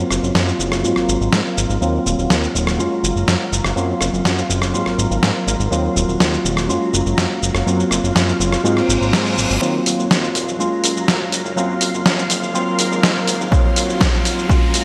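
A groovy, funky slice of filtered disco house opens on a clean tine electric piano played through a combo amp, with phaser and a low-pass filter, set against lush, vintage string-machine chords that swell in slowly and sustain with chorus shimmer and a sub octave beneath. A fat, sawtooth analog bass with a fast attack and decaying notes anchors the low end, and almost at once a gritty, compressed sampler-style drum kit joins with hi-hat, rim click, shaker and a thick snare, sitting up front in gated and studio reverb. The keys, strings, bass and drums all pump with the sidechain as a filter sweep moves through the passage over a looping cycle of rich seventh and extended chords. A reverse cymbal rushes in at 8.8 seconds, and from 9.6 seconds a build-up begins with an electronic riser hovering in the background. At 13.5 seconds a punchy, layered electronic kick with tape warmth drops in up front. 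The whole cut carries a glossy 1980s-style digital sheen and a moderate hall reverb.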